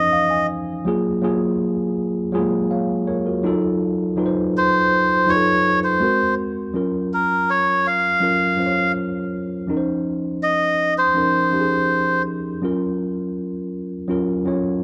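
A reedy, breathy melodica carries the melody up front in this lush, warm soul piece cut from a longer work, its nasal plastic tone colored by cassette tape before it drops out at 12.2 seconds. A worn, slightly out-of-tune tine electric piano opens with a short fill and then accompanies through rich chords such as Dbmaj9, Gbmaj9 and F7b9, playing on alone until 14.8 seconds. The home cassette recording has light reverb and a small-room ambience.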